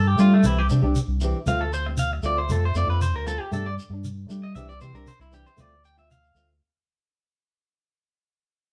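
Recorded as a band playing live in one room, the sound carries a moderate studio reverb and fades out across the whole 6.6-second fragment cut from a longer piece. This is sunny, warm highlife guitar band music in a straight four, built on a cycle of Cadd9, Dm7 and Gsus2. An electric guitar at the edge of break-up takes the solo, picking twangy arpeggios that sound slightly broken-up. Underneath, a fingered electric bass sits up front with a dark, round, amped tone. A classical nylon-string guitar fingerpicks a shadowy accompaniment with audible finger squeak, joining at 0.2 seconds alongside a grainy, mellow shekere heard close and dry.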